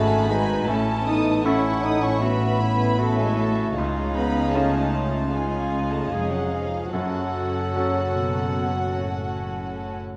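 Opening with the full ensemble at once, this sorrowful, moving cinematic film-score fragment in F# dorian unfolds rubato at 72-78 BPM: a floating, sul tasto violin section carries the melody over a second, intimate violin line and a bright solo clarinet, while rich viola and a background grand piano accompany, a mellow French horn section holds sustained chords, and dark bowed cello and double bass sections anchor the low end in a moderate scoring-stage reverb.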